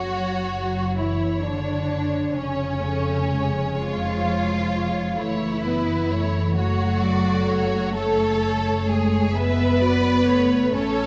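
Heard through a moderate scoring-stage reverb with a softened top end, this solemn, yearning passage from a slow romantic string movement in F# minor drifts in rubato 12/8 at 43 BPM. A close, smooth violin section sings the vibrato melody quietly above a lush, soft-attacked second violin line, while even-toned cellos and expressive double basses anchor the bass, and a dark, intimate viola section playing sul tasto joins the accompaniment at 2.4 s. The harmony moves from an open F#5 through C#/E# to F# minor.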